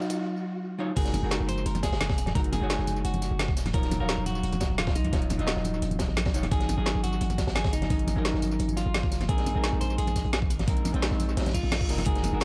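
Liquid drum and bass at 173 BPM in Gb lydian, warm and uplifting, this excerpt opens on a drum fill and a brief electronic riser before a short break gives way to the drop at 1.0 seconds. A deep, long 808-style sine bass with a fast attack sits up front, moving through chords from Ebmadd9 to Gb69, Ebm9, Ab7sus4 and Bb9sus4. A twangy clean electric guitar carries the melody while a dark, picked hollow-body jazz guitar accompanies, both treated with dub echo. The drums layer a compressed, pitched-up, thumpy electronic kick with an overdriven garage kit of woody snare, metallic hats, crash cymbal and tambourine, plus a saturated breakbeat kit with a high-tuned snare and rolled-off top tucked in the background. Very quiet, close congas and bongos join at 1.1 seconds, and a reverse cymbal sounds near the end at 11.5 seconds. The echo-heavy mix sits in light reverb.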